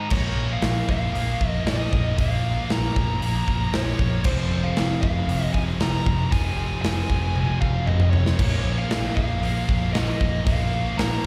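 A big, acoustic rock drum kit sits up front in this aggressive, driving hard rock excerpt, with a punchy kick, a medium-tuned snare, bright cymbals and toms, and a drum fill from 7.4 to 8.4 seconds. At 116 BPM in a straight 4/4, the harmony moves from Bb minor to F minor at 4.3 seconds and back to Bb minor at 8.4 seconds. A dark, smooth lead guitar carries the melody with overdrive, slapback echo and digital delay. Underneath, three guitars play riffs in the background: a compressed, scooped distorted guitar with slapback echo, a double-tracked, high-gain scooped guitar, and a sludgy, overdriven guitar. A picked electric bass adds a growly, amped low end. The sound is that of a live gig heard through the venue's PA, with a recital-hall reverb.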